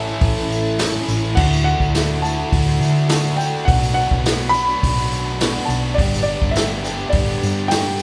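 A dark, worn grand piano carries the melody from the start of this jangly folk and heartland rock excerpt at 104 BPM in D major, over a shimmering, octave-doubled twelve-string acoustic guitar, a biting, double-tracked overdriven electric guitar riff with spring reverb, piping tonewheel organ chords through a slow rotary speaker and a round hollow-body bass, with a bright tambourine and a punchy vintage drum kit joining within the first second as the chords move from A through Dadd9 and Bm to G in a live-sounding studio room.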